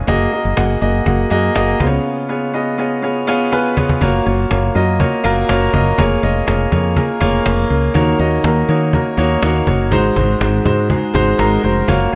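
A softly rolled-off, lightly reverberant small-room sound frames this glossy, uplifting 1980s-style pop excerpt, where an up-front baby grand piano with an open, long-sustaining tone carries the accompaniment over a round, dark fretless electric bass and a woody, hard-handed cajon with faint snares, the piano and cajon each adding a fill just before the second section begins at 4.0 seconds.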